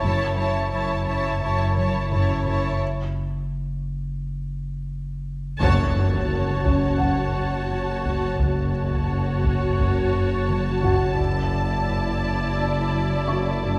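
A distant, vibrato-laden violin section holds a high melody over a second violin line, a smooth gliding synth bass riff, a rich cello section, a deep punchy sub-bass drone and a double bass section that drops out at 0.6 seconds, opening this eerie, mysterious suspense score excerpt in F# minor at 86 BPM, which breaks at 2.8 seconds before focused violas, the returning double basses, heavy-stick taiko drums and a very quiet electronic impact arrive together at 5.6 seconds, joined by a felt-muted upright piano with audible action noise and, near the end, a soft-attack studio violin section high in the background, all bathed in a wet concert-hall reverb.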